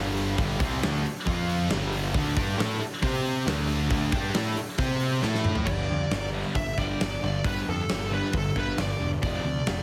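A big rock drum kit sits up front in a bright stone room, its fat snare and punchy kick driving this energetic, swaggering hard rock at 136 BPM in a straight 4/4. Alongside it, a picked electric bass with fuzz and overdrive comes through both direct and amped. Behind them, three distorted electric guitars stack their riffs: a compressed one, a sludgy overdriven one, and a double-tracked high-gain guitar that drops out at 5.7 seconds. A drum fill at 5.2 seconds leads into the next section, where the music settles into G mixolydian and a smooth, warm, overdriven lead guitar steps forward with slapback echo to carry the melody. Light reverb and small room ambience frame the heavily compressed, radio-like sound of this excerpt from a longer piece.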